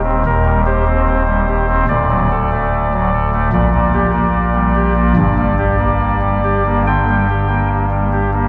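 A chamber organ on a soft reed oboe stop, with audible chiff and a tremulant, plays alone up front from 0.0 to 8.5 seconds in this grave, dark classical chorale cut from a longer piece, moving with rubato at about 73 BPM in 4/4 in G minor (tuned to A4 = 445 Hz) through Cm/Eb, D and Gm/Bb before settling on Gm at 5.2 seconds, all wrapped in a wet church reverb that places the listener further back in the room.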